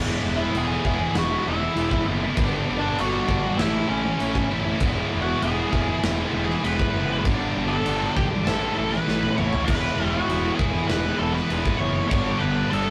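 A wall of three picked rhythm guitars, a bright overdriven stack, a scooped, double-tracked high-gain part and a thick, dark fuzz, sits back in the mix with a growly, fuzzed fingered bass from the first moment of this cathartic, anthemic alternative rock cut at 98 BPM in E mixolydian, cycling through E, G, A and Gadd9. A dark octave-fuzz lead guitar carries the melody from 0.4 seconds, and a huge arena drum kit with a punchy kick, medium-tuned snare, toms, crash and a rolled-off top joins at 0.5 seconds, playing a fill around 9.1 seconds. The rough rehearsal-room sound has light reverb and a saturated glow.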